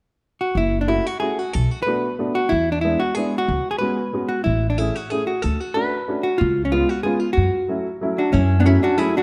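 This musette waltz in F# minor moves at 185 BPM in 3/4 with a rubato feel, its mood whirling and bittersweet. A clean, picked hollow-body electric jazz guitar carries the melody up front from 0.4 seconds, its tone dark, while a pizzicato upright bass with gut strings sits just as close, thumpy and woody. A worn, slightly detuned upright piano fills in the accompaniment with a warm, present sound. The harmony winds from F#m7 through Bm7, E7, C#7sus4, Amaj7, Dmaj7 and C#7 before settling back on F#m7. At 8.2 seconds a mellow, classical-style clarinet adds a distant second line in the background, and a moderate recital hall reverb gives the whole fragment a roomy glow until it breaks off at 9.2 seconds.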